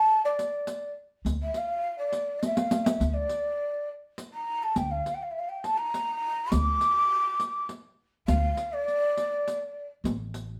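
A breathy, mellow ney opens this short cut from a longer Arabic maqam ensemble piece, its end-blown reed cane tone straight and unsteady, with a crisp attack that sounds at once distant and up front. The riq joins almost immediately with bright, close and dry jingles, and the upright bass enters at 1.2 seconds with woody, acoustic pizzicato on steel strings. The ney carries the melody in a high register while the bass holds a low foundation, all in a three-beat metre with a straight feel. A brief drum fill arrives at 2.4 seconds. The trio plays live in one room, and a studio reverb lends the sound a gentle, wet space. The mood is soulful and melancholic throughout.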